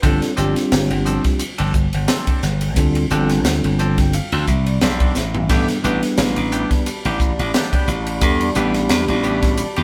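Punchy slap bass sits up front in this driving, nocturnal electric jazz fusion excerpt, joined by a crisp drum kit with a high-tuned snare and a brief fill, a bell-like tine electric piano that adds fills from 3.4 seconds and again at 9.6 seconds, twangy picked stabs from a clean electric guitar, and, from 6.7 seconds, a dark, glassy FM pad with ensemble chorus, the band playing live in a moderate stone room as the harmony moves from G9sus4 to A9sus4.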